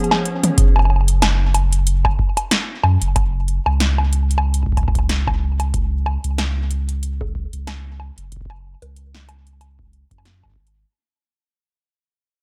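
Intricate and eerie, this IDM passage moves at 93 BPM in 4/4, with a 56% swing on the sixteenths and tuning set slightly flat at A4 = 436 Hz. It opens on a brief break where a hollow, flute-like pad, warbling and vintage in tone with an ensemble chorus, holds a C#7 chord until 0.6 seconds. At that point the harmony shifts to F#5, and a deep, round sine sub bass enters up front with a fast attack and sustained notes, joined by an analog electronic kick with a deep, tape-warm tone. Throughout, an up-front analog drum machine supplies bongos, metallic hi-hats, a punchy snare and toms, carried on a tape echo, with both drum parts re-recorded in a large room. The sound is dry and gritty, as if captured through hardware within a digital ambience, and from 0.6 seconds the whole passage fades out until the cut at 10.9 seconds, revealing it as part of a longer piece.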